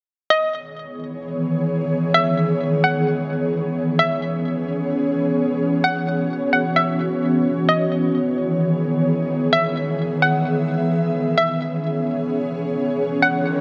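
A hollow, bouncy square-wave pluck carries the melody from 0.3 seconds, sitting up front with a bright, detuned edge that is shaped by chorus, a low-pass filter sweep and digital delay. By 0.9 seconds an ethereal, airy pad joins beneath it with sustained chords, its slow attack and long release softened by ensemble chorus and its own reverb into a mellow cushion. This hazy hip hop fragment moves at a half-time feel in 4/4, cycling through C#m9, E6 and F#7sus4 before returning to C#m9 and E6. A lush hall reverb with a 2.6-second decay bathes the mix in a dreamy, spacious glow. At 13.4 seconds a brief electronic riser surfaces in the background just as the excerpt is cut off.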